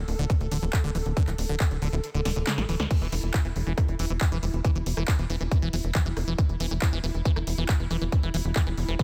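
A dry, close mix opens this excerpt of psychedelic trance at 138 BPM in straight 4/4, intense and trippy from the first beat. A tight, punchy sequencer bass built from sawtooth and square waves with ring modulation and a plucked filter drives low from 0.0 seconds, sitting up front beside the layered electronic kick, which arrives at 0.3 seconds with a firm, room-recorded thump. At 0.2 seconds a liquid acid bass riff enters, squelchy and resonant with filter sweeps, phaser, tape echo and sidechain pumping giving it a bright, slippery edge. The techno drum kit adds overdriven handclaps, hi-hat, rim click, a punchy snare and crash cymbal, while a detuned, chorused triangle texture pulses softly in the background with sustained chords and its own reverb. The kick drops out around 2.0 seconds as a drum fill rolls in at 2.3 seconds, and the harmony moves from D5 to E5 at 2.9 seconds when the groove returns.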